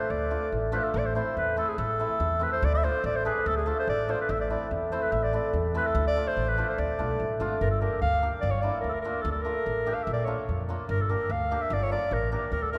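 Klezmer in a bittersweet, soulful mood, cut from a longer piece, with a solo clarinet in classical style singing the melody up front while a shimmering, ringing hammered dulcimer accompanies and a woody, dark pizzicato upright bass anchors the low end. The tempo gradually speeds up throughout, and a second section begins at 7.6 seconds with a shift to a new harmonic center. A deep church reverb surrounds the close, warm trio with a spacious, hall-like glow.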